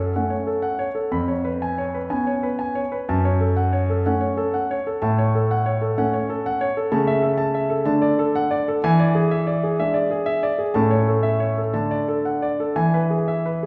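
This classical-period piano sonatina is playful and cheerful, moving in 6/8 with a flexible rubato feel. A solo grand piano with a smooth, vintage, up-front tone plays throughout the 13.7 seconds, and its harmony turns brighter at 6.9 s. A recital hall reverb casts a generous wash around it, as if heard from further back in the room, and the passage is cut from a longer piece.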